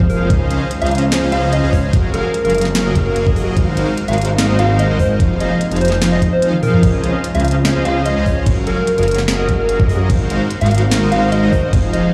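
A thick, saturated detuned saw bass with chorus and sidechain pumping sits up front in this euphoric, bright future bass passage, joined by a smooth, full-bodied supersaw riff carrying cassette tape colour and the same pumping. A round, keys-like FM lead plays the melody with chorus and tape echo, while a shimmering, ethereal pad holds very quiet sustained chords through a half-time groove of a knocking electronic kick and a trap kit with a sharp snare, crisp hats, crash and toms, both drum parts in studio reverb. The harmony cycles through major-seventh, minor-seventh and thirteenth chords, a drum fill lands at 6.5 seconds, and the whole sounds played on a big sound system in a bare room.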